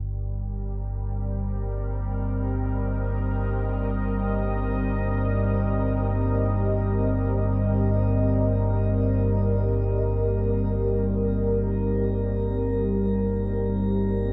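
Cavernous and ominous, this dark ambient drone drifts in free time, a fragment cut from a longer piece. A deep, rumbling drone sits low from the very start, its detuned, warbling tone carrying a vintage character through a lush chorus and its own reverb. At 0.3 seconds a moody pad of sustained chords joins above it, mellow and wave-folded, with a sub octave and ring modulation colouring its slow-blooming sound. The pad is dressed in chorus, built-in reverb and shimmer reverb, and both parts sit up front. A huge ambient space with a 9.3-second decay surrounds them, and the whole recording stays dark, with nothing above 8.0 kHz.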